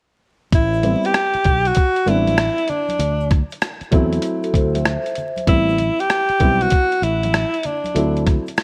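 Mellow and smoky, this short jazz-hop cut from a longer hip hop piece rides a swung groove. A gritty, pitched-down boom bap kit with a thumpy kick sits up front beside a clear, close-miked alto saxophone singing a vibrato-laden jazz solo, while a direct fretless electric bass and a dark, boxy baby grand piano with audible action noise trace Am9 and D9 beneath. A very quiet egg shaker and congas add dry texture, a soft-mallet vibraphone rings in briefly at 4.4 seconds, and worn cassette warble, vinyl crackle and a small room's light reverb tint the whole.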